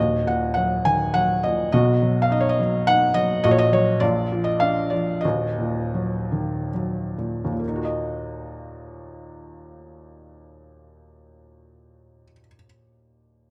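A soft, mellow felt-muted upright piano plays alone from the start in this brooding, lyrical classical fragment in Eb minor and 3/4, tuned to A4 = 435 Hz, its rubato tempo ranging from 62 to 106 BPM and slowing from 3.4 to 7.6 seconds before a new section begins, captured up front by close, detailed microphones with light reverb that give the vintage instrument an intimate feel across its span from Eb1 to Ab5.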